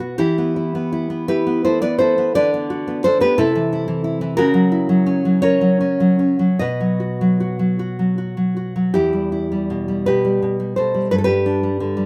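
A romantic piece for solo classical guitar in E minor, this short excerpt moves in a slow, rubato 6/8 at around 50-61 BPM, its mood intimate and wistful. The fingerpicked nylon-string guitar sits up front with a deep, warm tone, finger squeak audible against a moderate studio reverb. Its harmony passes from Em through Bm/D, Am/C and F#7/C# to B, returning to Em and settling on G by 11.1 seconds.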